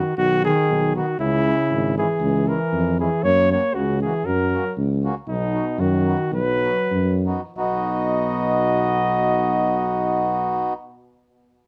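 Alpine folk dance-band music in 2/4 with a festive, jolly mood, moving between 84 and 119 BPM in B major with a lightly swung eighth-note feel. A mellow, close-miked flugelhorn sits up front carrying the melody in a classical style, while a clear euphonium with light vibrato and a soft attack plays a second line beneath it, touched by tape echo. A reedy, round accordion with a single-reed, tone-chamber voice fills out the accompaniment, and a present tuba supplies the bass from 0.2 seconds, also placed up front. The harmony moves from B through C#m and F# before returning to B, and the tempo slows between 5.3 and 7.6 seconds as the first section draws to a close, giving way to a second that runs to 10.4 seconds. Light reverb gives the band a gentle sense of space, and the clip is cut from a longer piece.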